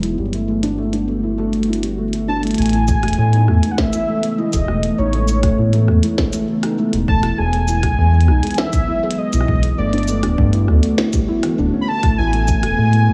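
A round, dark analog bass sits up front in this playful, glitchy IDM excerpt at 100 BPM, underpinning a felt-muted upright piano whose boxy, intimate arpeggios carry audible action noise and analog delay, while a glassy FM pad holds ethereal sustained chords with ensemble chorus and sidechain pumping in the background. A tiny-snared drum kit with clicky hats, rim click and shaker runs from the start, joined by a velvety, detuned synth lead with vibrato and chorus at 2.3 seconds and a deep electronic kick at 2.9 seconds. The chords move through Gmaj9, Amaj9 and Emaj9 in an echo-heavy mix with light reverb and small room ambience.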